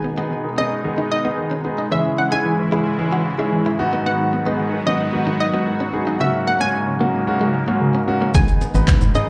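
An up-front concert grand piano carries the accompaniment in this bittersweet, energetic dance-pop excerpt in G# minor at 112 BPM, its intimate tone carrying audible action noise, deep bass and long sustain, all pumping against the sidechain. Above it, a hollow, bouncy square-wave pluck with ring modulation, chorus and analog delay plays the melody, while a detuned sawtooth supersaw swell holds evolving sustained chords. In the background, a lush unison pluck with a filter sweep spins arpeggios through analog delay, and a bright, clean electric guitar, recorded direct and picked, plays a compressed riff through lush chorus. The harmony moves from G#m through C#m/G#, B/G# and F#/G# before returning to G#m, and at 8.3 s a dark, organ-like FM bass and a punchy analog drum machine enter with kick, snare, handclaps, hi-hat and shaker. The mix sits in moderate spring reverb and large studio ambience, with the drums re-recorded in a big room.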